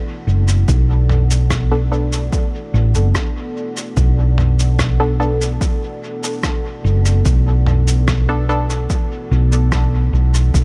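A deep, moody pad fades in from the opening, holding a single Bm7 chord with detuned sawtooth warble, chorus and its own reverb, setting a hazy ambient dub mood in B minor at 73 BPM. Almost at once a hollow-body, short-scale electric bass arrives up front, round and dark with tube saturation, anchoring the low end. A muffled, tape-colored sampler-style kit of cabasa, rim click and toms follows, sent through studio reverb and dub echo, while a punchy, layered electronic kick sits in the background with its own reverb. From 1.7 s to 8.8 s a muted, filter-plucked chord stab cuts in with a fast attack and short decay, its chorus and dub echo adding to the drifting, deep atmosphere. The overall sound is fairly dry apart from these effects, and the passage is cut from a longer piece.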